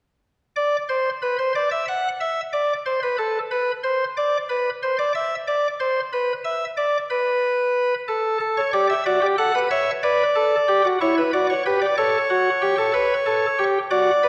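This baroque-style fugue, cut from a longer classical piece for pipe organ, moves in a stately, elegant 12/8 at 61 BPM. A single chamber organ voice on a nasal cornet solo stop, with audible chiff and placed up front, enters at 0.6 s and plays alone between E4 and F#5, starting unharmonised before D, G and A7 chords arrive from 8.1 s. The dark production sets it in a reverberant scoring stage with a 1.5 s decay.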